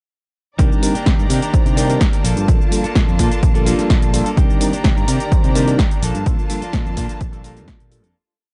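Dry, gritty and dulled like a worn cassette, this short, groovy and nostalgic filtered disco house piece runs as one full drop from 0.6 seconds before fading out from 5.6 seconds, built on an overdriven four-on-the-floor electronic kick up front, punchy overdriven drum-machine hats, shaker and backbeat snare, and a growly, funky syncopated fingered bass, while a bell-like tine electric piano with phaser and sampler grit plays a rhythmic chord riff, a clean direct guitar strums compressed sixteenth-note chord shapes, and a rich bowed string section holds smooth, vibrato-laden chords over a Cm9 to Gm9/Bb cycle, with most parts pumping against the kick.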